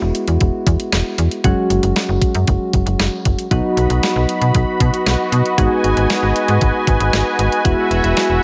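A thumpy kick, medium-tuned snare and hi-hat from a clean, overdriven 12-bit drum machine drive this cool, nocturnal synth-pop excerpt at 116 BPM in G# minor, over a snappy slap-like FM bass with a metallic attack and soft, round electric-piano-like keys with chorus moving from Eadd9 through F#sus2, B and G#m7, and a bold, brassy analog pad with detuned sawtooth warble and vibrato enters up front at 3.5 seconds in light reverb.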